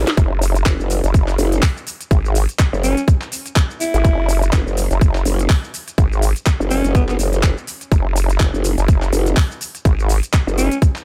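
Bass house at 124 BPM in 4/4 with a 16th-note swing, swaggering and bouncy, cut from a longer piece and opening on a drum fill. A tight, up-front electronic kick and a garage kit of cracking snare, crisp hats, handclaps and shaker, tape-warm and re-recorded in a large room, drive two pumping basses: a bright, aggressive growl bass on F#1 with chorus and tube saturation, and a nasal, resonant vowel-sweep wobble bass moving between F#1 and G#1 with overdrive. From 2.8 to 7.2 seconds a raspy, close-miked alto saxophone plays a jazz-style solo between B3 and E4 with vibrato and tape echo, returning briefly at 10.6 seconds, all set in a digital ambience.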